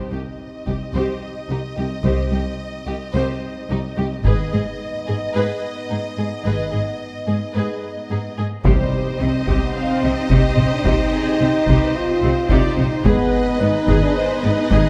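Taiko drums struck with hard sticks punctuate this dark, epic orchestral film-score excerpt at 109 BPM in C harmonic minor, sounding briefly at 0.7 and 4.2 seconds before driving on from 8.6 seconds, while a close, focused cello section and woody double basses hold the bass, a distant French horn section sustains shadowy chords, a lush violin section carries the expressive vibrato melody over a smooth second violin line and an intense viola accompaniment, and a background string section with portamento adds sustained chords from that same point, joined by a round soft-mallet timpani in a moderate concert-hall reverb.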